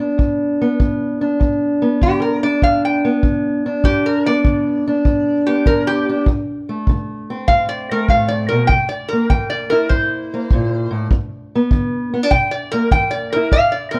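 Soulful and swaggering, this excerpt of acoustic country blues swings along at 99 BPM in G mixolydian, tuned slightly flat to A4 = 435 Hz: a dark, boxy parlour steel-string acoustic guitar fingerpicks the accompaniment up front, a punchy, roomy kick drum played with brushes keeps time, and from 2.0 seconds a metal-body resonator guitar, picked with fingerpicks and played with a steel slide, carries a metallic, nasal melody through a small room ambience.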